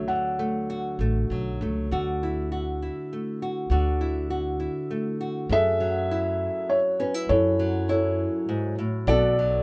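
Acoustic folk-pop ballad in 3/4, heartbroken and reflective, cut from a longer piece and played live together in one room with light reverb. A felt-muted upright piano carries the melody, its thick felt and audible action noise giving a soft, intimate tone; it sounds briefly at the start, rests, then returns at 5.5 seconds as the harmony shifts to F#m9. Throughout, a bright, fingerpicked nylon-string guitar provides accompaniment while a woody, thumpy pizzicato upright bass on gut strings anchors the low end, all three parts sitting up front.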